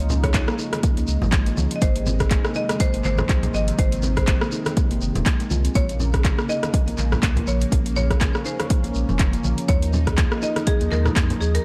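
A swung sixteenth-note groove at 122 BPM in 4/4 drives this hypnotic, spiritual afro house excerpt in Bb minor, anchored by an up-front electronic kick that is deep, layered and overdriven, with the sound of a large room around it. A deep house kit adds handclaps, rim clicks and metallic hi-hats, also overdriven, while bright congas played with soft hands sit in the background and a grainy, close shekere fills in the texture. A round sine sub bass and a detuned sawtooth analog pad carrying sustained chords with chorus both pump with sidechain compression, as the harmony moves from Db to Ab, then Bbmadd9 and Ebsus2 at 9.7 seconds. On top, a buzzing kalimba plays woody, hollow arpeggios through a digital delay, and a dry, airy marimba struck with hard mallets carries the melody, also echoed by delay. The production is dark and warm, and the passage is cut from a longer piece.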